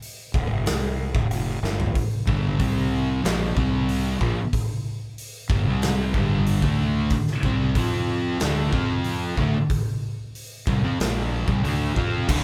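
Hypnotic and sludgy, this stoner and doom metal excerpt moves at 93 BPM in a straight 4/4, with a big acoustic rock kit up front (bright cymbals, punchy kick, medium-tuned snare) and a growly, overdriven fingered bass joining at 0.3 seconds. After a drum fill at 1.6 seconds, two picked fuzz guitars, one warm and one dark, enter at 2.3 seconds and sit in the background, riffing over power chords that move from G5 through C5, Bb5, F5 and D5. The band sounds like it is playing live in one room with light reverb.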